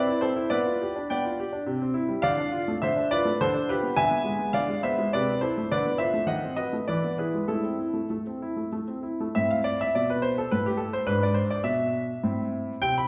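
A solo baby grand piano opens on a C major chord, its tone clear and natural with a short sustain. This is a classical-period sonatina in A minor, dramatic and serious in mood, moving in 3/4 at 103 BPM with a flexible, rubato feel. The harmony darkens as it travels through D minor, diminished and dominant-seventh colours toward a cadence on A minor at 7.5 seconds. A contrasting passage begins at 9.3 seconds, turning on an E7 chord over G# before settling again on A minor. The instrument sounds up front, with its range spanning G#2 to B5, while a wet recital hall reverb lends the sense of hearing it from further back in the room. The recording is cut from a longer piece and ends at 13.1 seconds.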